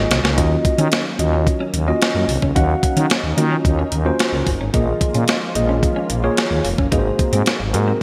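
A short drum fill opens this slick, late-night slice of early-eighties boogie funk, where a thumpy, up-front digital drum machine with gated reverb and a thick, growling FM bass drive under a mellow tine electric piano, a dark semi-hollow guitar riff with analog chorus, and a smooth detuned sawtooth pad in the background, all moving from Ebm9 to Bb7sus4 at 4.7 seconds and Ab9 at 6.9 seconds inside a lush hall and bright digital production.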